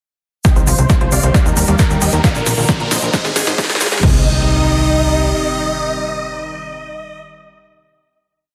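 A huge, euphoric supersaw lead carries this short uplifting trance piece at 134 BPM in C minor. It plays a repeating sixteenth-note riff over a pedal note in thirds and sixths, its detuned sawtooth tone shaped by phaser, delay, a low-pass filter and sidechain pumping. Beneath it, a lush supersaw pad holds slow-attack chords while a very quiet unison pluck runs a three-step arpeggio loop that drifts against the bar, and a tight, nasal sequencer bass rolls in sixteenths. The driving build from 0.4 seconds pairs an up-front, overdriven four-on-the-floor kick with a punchy snare backbeat, crisp hats, crash and a drum fill, plus a grainy hand-played egg shaker in the background, as a filter sweep and a riser move through Cm, Eb, Bb and Ab. After 4.0 seconds the drums, shaker and pluck fall away and the music settles on a final Cm chord, with the riser and impact effects sounding beneath the lead and pad until 7.2 seconds. 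The emotional mood sits in a moderate concert hall reverb, finished with a dense, heavily limited modern master.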